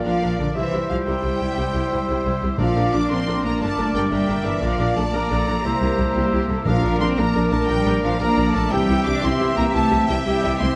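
A triumphant, soaring cinematic passage cut from a longer piece opens with strings, winds and brass sounding together, a lush violin section carrying the melody high above in a 12/8 lilt. Around it, a second violin section, an airy flute section, a distant, roomy oboe and a bright clarinet trace second lines, while a close studio viola section fills in the accompaniment. Mellow French horns hold soft-edged sustained chords, and a clear trumpet section adds stabs in the background. The low end rests on a rich cello section and an up-front double bass section, both bowed with vibrato. Soft-mallet timpani with a round, dry tone strike twice, near 2.6 and 6.7 seconds, as the harmony moves mainly between Bb and C with a brief turn to Gm, all set in a moderate scoring-stage reverb.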